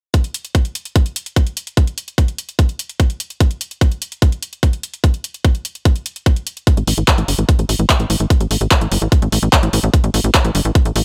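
The sound is dry and close, with every part set up front in a short fragment cut from a longer psychedelic trance track that feels alien and psychedelic in a straight 4/4. An overdriven electronic kick drum, tight and layered, carries the foundation from 0.1 s and sits as the loudest element in the mix. Alongside it, an electronic drum kit adds handclaps and bright hi-hats, its own grit coming from overdrive. At 6.8 s a punchy sequencer bass enters low in the register, its sawtooth and square-wave tone coloured by ring modulation and a plucky filter with a fast attack and quick decay. The bass gives the closing seconds a driving edge that heightens the psychedelic character.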